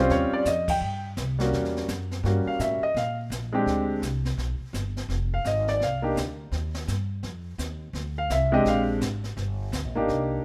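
A concert grand piano and upright bass open this swinging, relaxed jazz trio excerpt together, with a brush-played drum kit joining at 0.1 seconds and the whole band hitting an accent at 0.6 seconds. The piano carries the melody up front, with an intimate, natural tone, deep bass and audible action noise. The pizzicato upright bass sits close as well, woody and dark with steel strings. Behind them the drum kit sounds acoustic and natural in a small room: brushed snare, dark cymbals including crash and hi-hat, a medium-tuned snare and a boomy kick. The harmony moves through rich chords such as Eb13, Edim7, G7b9 and Cm before settling back on Bb13. A light reverb surrounds the trio, and the passage reads as a single swung section lifted from a longer piece.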